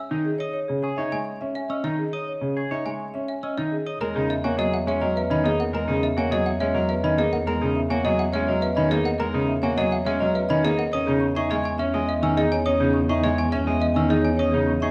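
Minimalist classical pattern music in 3/4 at 104 BPM, bright and propulsive, where a woody trough xylophone and a slightly broken-up, twangy electric guitar spin arpeggios around a smooth marimba melody over an intimate, brilliant baby grand piano with audible action noise, and a bowed double bass with vibrato and portamento joins on E at 4.0 seconds, all set in a moderate recital hall with a dark production and faint mains hum.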